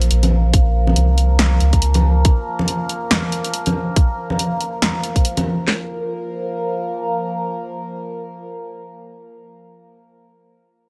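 A meditative, heavy slice of half-time deep dubstep opens with a resonant, chorused drone of moving overtones, a round, soft sub bass that drops away at 2.2 seconds, and an overdriven deep house kit with a punchy snare, soon joined by bright, distant congas trailing dub echo and an up-front garage kit with a tight kick and cracking snare, before the drums fall away by 5.8 seconds and the drone carries on alone under light digital ambience until 9.3 seconds.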